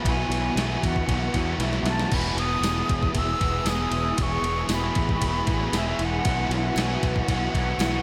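A dreamy mix soaked in huge ambient reverb gives this hazy 8-second shoegaze and dream pop excerpt in E major a floating glow at 116 BPM in a straight 4/4. An airy, expressive jazz flute with vibrato and delay carries the melody above two crunchy overdriven guitar riffs, one bathed in analog chorus and the other in reverse reverb, while a very quiet, lo-fi electric guitar through a small old amp picks arpeggios and a growling, up-front fingered bass adds overdriven grit. A thumpy, tape-tinged 80s drum machine with a gated-reverb snare plays a fill at 1.6 seconds, a close, jingly tambourine enters at 2.6 seconds, and the harmony moves from Bsus4 to Eadd9 and back to Bsus4.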